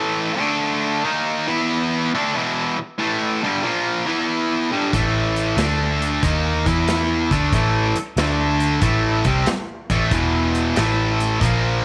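Swung eighths in 4/4 drive this raunchy blues rock and southern rock power-trio excerpt, which opens with a bright, overdriven, double-tracked electric guitar riff played alone up front over D5, D#5 and E5 chords until a dark, round, foam-muted vintage bass and a big acoustic rock kit with punchy kick, medium-tuned snare and hi-hat join at 4.9 s, the trio sitting in light reverb and studio ambience as A5 returns among the changes.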